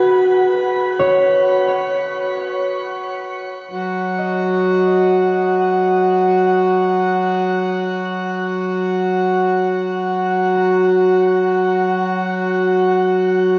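Thumb-plucked concert harp arpeggios ring out first in free time, their acoustic tone up front and trailed by tape echo over a suspended C#7sus4 chord. At 3.7 s the harmony settles onto F# major as a hand-pumped harmonium enters with a reedy, breathing drone, its boxy small-room character sitting close beside the harp. The whole passage feels serene and peaceful, bathed in a wet shimmer reverb with a long 7.8 s tail and a soft, rolled-off top, and it is cut from a longer ambient piece.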